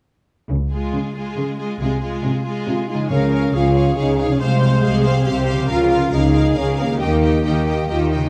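Bowed double basses, distant and even, open this cinematic excerpt at 0.5 s alongside a rich, vibrato-laden cello section, with a clear, focused violin melody, a lush second violin line and a close viola accompaniment arriving moments later, all moving in a brisk 3/4 at 138 BPM in Db lydian. A mellow French horn section enters at 2.7 s with softly attacked sustained chords, and a very quiet, ringing concert harp follows with fingerpicked arpeggios. Round, soft-mallet timpani at 3.1 s mark the start of a new section, lending an adventurous, soaring lift to the strings, captured with close, detailed microphones under light reverb.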